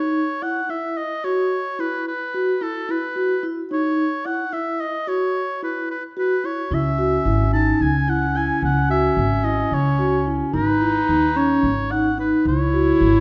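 A clear, present oboe opens this restless, pensive contemporary instrumental in C# minor, carrying the melody in a classical style while a vibraphone struck with soft mallets rings out metallic, mellow arpeggios beneath it. The piece moves at 220 BPM counted in eighths, in a 7/8 metre with a straight feel, opening on a C#m11 harmony. At 6.7 seconds a warm clarinet joins with a second line, and an upright bass enters alongside it, its pizzicato woody and thumpy and placed up front. The harmony then shifts between C#m and G#m before returning to C#m as the oboe and vibraphone continue alongside the lower voices. A moderate recital hall reverb and a dark production surround the ensemble, and the passage ends at 13.2 seconds as a cut from a longer piece.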